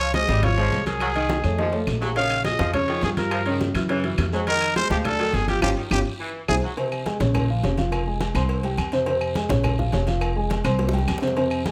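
A driving salsa groove at 208 BPM in straight 4/4 and F minor powers this fiery, danceable Latin cut from a longer piece, with low-tuned, ringing congas, tight high-tuned bongos and cowbell, metal-shell timbales and agogo bells, woody claves from 0.4 seconds and a raspy guiro all sitting in the background, and drum fills plus a band accent marking the turns. A thumpy, gut-strung pizzicato upright bass sits up front and, together with a dark, boxy upright piano with audible action noise and long sustain, carries the harmony, while a gritty, growling trumpet with light vibrato and plate reverb leads over a bright, vintage saxophone section line. The horns drop out at about 6.7 seconds, leaving the rhythm section to ride a simpler Bbm–Fm–C5 minor progression to the close at 11.7 seconds.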